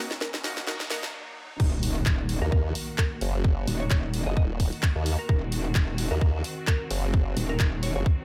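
Dry and high-passed, this aggressive, bouncy bass house excerpt opens with a build-up of lush background strings, a bold orchestra-hit-like synth stab with a filter sweep and tape echo, a glassy wavetable pluck melody, a riser and noise sweep, and a garage kit with cracking snare, handclaps, hi-hat and crash. It then drops at 1.6 seconds with an impact, a tight, tape-warm kick up front and a distorted, metallic FM wobble bass, joined at 2.4 seconds by a saturated formant-sweep wobble bass, both pumping against the kick.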